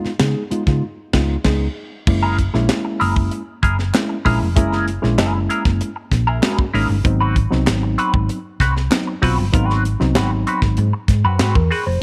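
A small room with light reverb frames this playful funk cut at 97 BPM, which opens on a break with a band accent before the groove arrives at 2.1 seconds. Dry, tight drums with a high-tuned snare and a dark, round hollow-body bass sit up front beside reedy, worn electric piano stabs that are lightly overdriven and slightly out of tune, moving from Db9 to Gb9 and then Ab7#9. A bright, twangy clean guitar with wah and harmonic tremolo adds accompaniment from 2.1 seconds, while very quiet, crisp handclaps join at 2.7 seconds.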